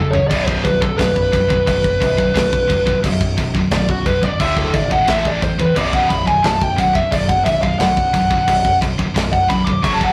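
A rough rehearsal-room recording with light reverb captures this relentless, aggressive heavy metal passage, cut from a longer piece and moving at 88 BPM in 4/4 with a straight feel in B minor. A bluesy, dark-toned lead guitar sits up front and plays a distorted solo across the whole stretch, ranging from F#4 to D6. Behind it, two picked high-gain rhythm guitars grind out the riff in the background, one heavy and bright, the other scooped, while a growling picked bass with overdrive, heard both direct and amped, holds down the low end. The tight metal drum kit is acoustic and mid-forward in a studio-room sound, with bright cymbals, a medium-tuned snare, a tight kick and toms, and it opens with a short fill from 0.0 to 0.3 seconds. The harmony rests on B5, shifts to D5 at 4.4 seconds and A5 at 5.1 seconds, then returns to B5.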